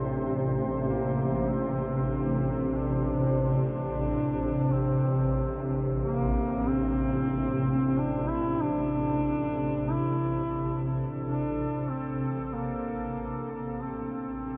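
Desolate and ominous, this dark ambient drone opens on a swarming, tense low drone up front, its detuned, wave-folded, granular tone evolving. A deep, mellow pad of sustained, chorused chords with ring modulation and a sub octave fades in alongside a distant, roomy duduk playing a solo folk-style melody with vibrato and scooped notes, the duduk carrying shimmer reverb and diffuse delay. The passage sits in a huge, wet reverb and fades out from 7.8 s to 14.6 s.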